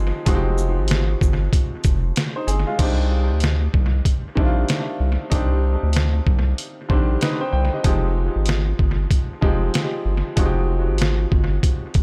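A dry, echo-heavy mix carries this dark, tough boom-bap hip-hop excerpt, where a clear, woody upright piano with short sustain plays filtered, delayed accompaniment over a round, nasal analog bass sitting up front, while a gritty, pitched-down sampler-style drum kit with a thumpy kick, medium-tuned snare, hi-hat, shaker and crash cymbal enters at 0.3 s with its own delay, all swinging through Fm7 and Cmadd9 chords.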